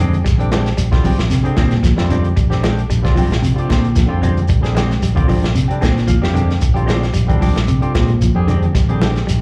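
A dark, round fingered electric bass sits up front in this hypnotic, funky afrobeat excerpt, over a gritty, saturated breakbeat drum kit with a tight kick and a rolled-off top, while a grainy shekere and very quiet, low-tuned congas fill in the background. A clean, picked electric guitar plays arpeggios and a hollow-body semi-hollow guitar adds phased stabs with slapback echo. A barky tine electric piano with analog chorus and slapback echo comps throughout and plays a short fill from 5.6 to 6.6 seconds, all over a Bb13 chord and heard as a live gig through the venue's PA.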